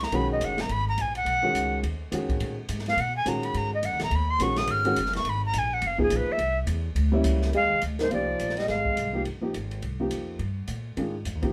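Searching and hypnotic, this modal jazz passage swings briskly at 211 BPM in 4/4, with a breathy, bright flute out front carrying the melody as a solo with vibrato over woody pizzicato upright bass, a vintage-toned upright piano and an airy, polished drum kit with dark cymbals and a boomy kick. At 7.5 seconds the harmony moves from G# dorian to F dorian and a mellow alto saxophone enters with a scooped, smooth-topped second line. Flute and saxophone both fall away at 9.2 seconds, leaving the rhythm section in a small, live-sounding room with moderate reverb as the cut ends.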